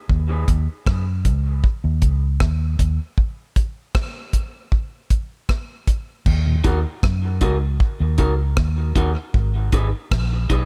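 Dub reggae with a spacious, deep mood, heard in a short cut from a longer piece in a straight 4/4 feel. A dark, round, foam-muted electric bass sits up front beside a dry acoustic drum kit with a tight kick, crash cymbal, hi-hat and rim click, both parts playing from the opening through to the close, set in a small room ambience. The harmony rests on an E-flat minor chord before a break at 3.2 seconds where the chords drop out, then returns and moves to A-flat minor near the end. A mellow tonewheel organ with key click, chorus vibrato and a slow rotary speaker appears only briefly in the background at 6.5 seconds. From 6.6 seconds a slightly broken-up, compressed electric guitar through a small old amp takes over the accompaniment, its picked notes softened by a low-pass filter, subtle chorus and dub echo.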